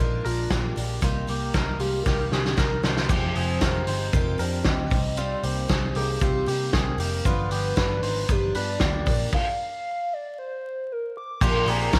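Bright and nostalgic, this jangly indie pop excerpt moves at 116 BPM in a straight 4/4, with a hollow, woody clarinet-like synth lead carrying the melody through chorus and slapback echo over a shimmering, octave-doubled twelve-string acoustic guitar and twangy, compressed clean electric guitar arpeggios bathed in lush chorus. A round, foam-muted vintage bass anchors the harmony from Bb7 through Fmadd9 and G7, while a loose, up-front drum kit with a fat snare, punchy kick and dark cymbals plays a fill at 2.1 seconds before a stop at 9.3 seconds. A very quiet analog pad slips in on a Bb6 chord at 11.4 seconds, and light reverb, small-room ambience and vinyl crackle give the whole a lived-in, vintage feel.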